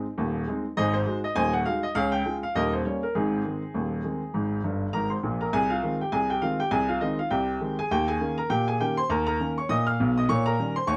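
A warm, open baby grand piano with long sustain sits up front and plays alone through this jaunty, playful 11-second ragtime cut in Ab major at 101 BPM in 2/4, with a light swing on the sixteenths, moving through chords such as Ab7, Db and Eb7, ranging from Eb1 to F6, and slipping in a fill at 4.6 s before the second section begins at 5.5 s, all heard in a small room with moderate ambience and a dark production.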